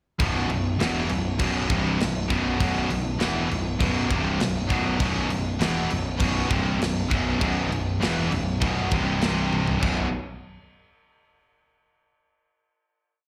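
A driving 4/4 pulse at 100 BPM opens this short, relentless heavy metal piece, with a tight metal drum kit up front laying down a metal drive groove of tight kick, medium-tuned snare, toms and crash cymbal, its top rolled off and mid-forward. A growly, fuzz-laden picked bass sits just as close, playing driving eighth notes from B0 to E1 and doubling the guitar riff. Behind them, three distorted guitars carry the same power-chord riff between B1 and E3: one overdriven and double-tracked, one high-gain, and one tight, the latter two touched with slapback echo, all bright and set in the background. The riff centers on B5 before shifting to C5 at 9.2 seconds, and a drum fill at 9.5 seconds leads into a final B5 chord at 9.8 seconds that rings out to 12.2 seconds. The whole performance sounds like a live gig heard through a club PA, wrapped in small-room ambience and club reverb.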